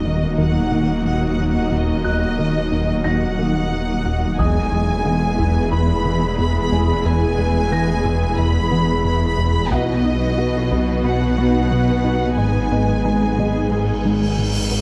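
A smooth, gliding synth bass leads this brooding, vast excerpt of hybrid orchestral and electronic film score, its sawtooth-and-triangle tone mellow with vibrato and portamento as it carries a riff at 90 BPM in a straight 4/4. Above it, a lush violin section sings the melody with vibrato and a focused, smooth top, while woody violas and cellos sit in the background and a menacing, detuned saw bass swells and saturates far beneath. An ethereal, warbling pad holds sustained chords through ensemble chorus and its own reverb, a dark concert grand piano adds a delayed texture low in the mix, and a very quiet analog pluck ripples through arpeggios. The harmony moves from D# minor through E and B to G# minor, with close, dry taiko hits arriving at 4.4 seconds and again near 9.7 seconds. A huge, bright cymbal swell rises at 13.6 seconds, and the whole sits on a scoring stage with moderate reverb in a dark production.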